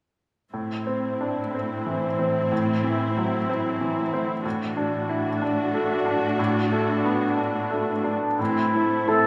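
A moderate scoring-stage reverb gives this short cinematic fragment, cut from a longer piece, a spacious but intimate sound, with a longing, moving mood in a flexible, rubato three-beat metre. A brilliant grand piano sits up front as accompaniment, its audible action noise and long sustain adding a close, personal touch. A lush, bowed viola section shares the accompaniment with focused vibrato, while a rich cello section holds a single low note as the bass. Underneath, a very quiet concert harp rings out thumb-plucked arpeggios. The harmony moves from Am to D/A at 4.5 seconds and back to Am, and at 8.1 seconds a smooth, soft-attacked classical clarinet enters up front with a clear solo second line just before the fragment ends.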